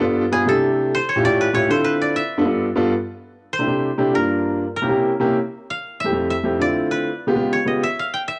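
A homey cassette recording in a small, wet booth, with plate reverb and tape color on both parts, carries this lively, danceable straight-feel jazz cut in C major at 196 BPM: an up-front, woody, dry koto played with fingerpicks takes a solo through the first 2.9 seconds and carries the melody, while a natural-sounding, warm baby grand piano comps up front alongside it through changes from C6 and A7b13 to Db7#11. The piano drops out at 7.8 seconds as the changes arrive on a rootless Cmaj7, and the koto rings out to 8.4 seconds in this passage cut from a longer piece.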